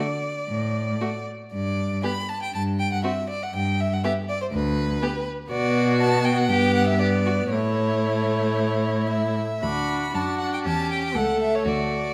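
A quick classical-period movement for string quartet, cheerful and graceful, heard as a short excerpt cut from a longer piece. The first violin carries the melody with a rich, focused tone and a smooth top, bowed with vibrato and placed up front. The second violin plays a clear second line that sits further back, while the viola fills in the accompaniment with a rich, focused sound and a smooth top. The cello enters at 0.5 seconds with a bass part that is also close and forward, bowed with vibrato. The harmony moves through G, Em, Bm and A before a new section begins at 9.6 seconds on D. A moderate scoring-stage reverb gives the ensemble a sense of space around the single players.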